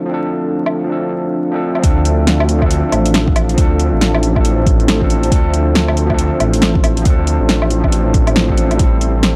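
Future garage at 138 BPM in D minor, with a swung 16th-note feel and a melancholic, rainy mood, built on a barky, overdriven tine electric piano carrying 12-bit sampler grit and tape echo over a dark, chorused ambient pad set back in the mix; a deep house kit of fat snare, metallic hi-hats and woodblock enters at 0.7 s, a menacing detuned saw bass with a filter swell joins a deep electronic kick at 1.8 s, and the pad, piano and bass pump against the sidechain as the chords shift from Dm7 to Am7, all wrapped in a transformer-saturated, vinyl-crackled hardware sound.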